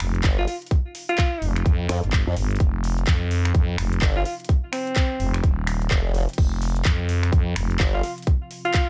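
A swaggering, gritty bass house excerpt opens on a growling FM bass with tube saturation and sidechain pumping, a garage kit of overdriven metallic hats, snaps, claps and crash, and a very quiet, detuned analog pad, joined at 0.2 seconds by a saturated formant-sweep wobble bass with chorus and a tight, up-front electronic kick, before a breathy alto saxophone carries the jazz-style melody with scooped notes and tape echo from 0.4 seconds in a dry mix.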